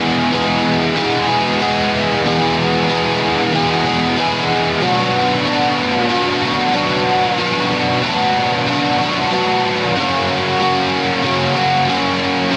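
Rock in E mixolydian at 93 BPM in a straight 4/4, with a blissful, dreamy mood, cut from a longer piece. A single biting overdriven electric guitar, bright, picked and double-tracked, sits up front and plays alone from 0.0 to 12.6 seconds, ranging from E2 to G#4 through analog chorus and slapback echo over chords moving from E to Bm at 4.8 seconds and F# at 10.0 seconds. Moderate studio reverb surrounds it, and the master is dense and heavily limited in a modern style.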